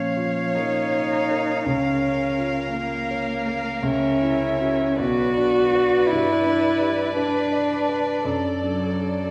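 A dark violin, dark cello, mellow baby grand piano and warm viola sound together from the opening moment of this slow, elegiac movement for piano quartet, a short passage cut from a longer piece in B-flat minor. At 54 dotted-quarter beats per minute in 6/8, the pulse moves unevenly with a rubato feel, lending the music a solemn, breathing quality. The violin carries the melody with a woody, vibrato-rich tone. The up-front cello sings the second line with a soft attack and sul tasto intimacy and is the most prominent of the strings. The piano's vintage, long-sustaining accompaniment spans its deep bass up into the treble, while the viola adds airy, sul tasto accompaniment close to the ear. The harmony moves from B-flat minor toward F-sharp seventh at 3.8 seconds and turns to B minor and G before settling on D over F-sharp, all set in a wet recital hall heard from further back in the room.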